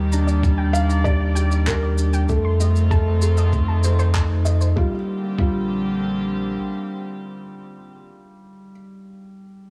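A muffled, thumpy electronic kick drives this excerpt of piano and strings electronica at 97 BPM in a straight 4/4, following just after layered, tape-warm electronic shaker and handclaps, with a round sine sub bass sitting up front under tube saturation and sidechain pumping. The mood is luminous and hopeful, set in Bb major over Ebmaj7, F7 and a closing Bb69, with the opening stretch serving as a drop before a brief new section arrives at 4.8 seconds. A felt-muted upright piano carries a soft, intimate riff with audible action noise and digital delay, while a second felt-muted piano line adds a mellow melody from 0.7 seconds. Beneath them, a dark chamber string section holds sustained chords with a nasal, reedy gut-string tone and pumping movement, and a warbly, dusty pluck with chorus and delay ripples through lo-fi arpeggios in the background. The drums fall away by 5.6 seconds, leaving the pianos, strings and sub bass to linger in a light, small-room ambience.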